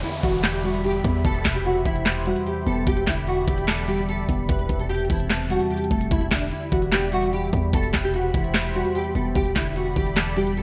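A half-time trap groove drives this eerie, brooding hip hop excerpt, its electronic drum kit sitting up front with a knocking kick, sharp snare, crisp hats and handclaps, all roughened by overdrive and re-recorded in a small room. Beneath it, an 808-style bass booms deep and warm with a sine body, a noise layer, a fast attack and a decaying tail. A fingerpicked nylon-string guitar carries the classical-flavoured melody, its full-bodied acoustic tone treated with ensemble chorus and delay. Muted, felt-like synth keys add soft, intimate accompaniment with a filter sweep and chorus, while a dark analog pad of detuned sawtooth and sub octave holds moody sustained chords with a slow attack and long release. A downlifter murmurs in the background for the first 2.9 seconds, and the whole clip circles through minor-seventh, major-seventh and sixth chords over an E pedal, framed by light reverb and a bright 1980s-style digital sheen.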